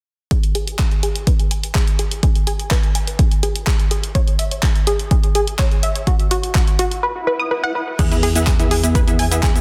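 Densely limited with a light reverb, this driving, bittersweet progressive house fragment sets a mellow, detuned sequenced synth arpeggio, treated with chorus, phaser, delay, sidechain pumping and a filter sweep, over a layered deep house kit of crash, handclaps, hi-hat and shaker and a punchy, up-front electronic kick, until an electronic swell at 7.2 seconds leads at 8.0 seconds into lush, detuned unison pluck stabs with delay and pumping, alongside a nasal, evolving sawtooth sequencer bass.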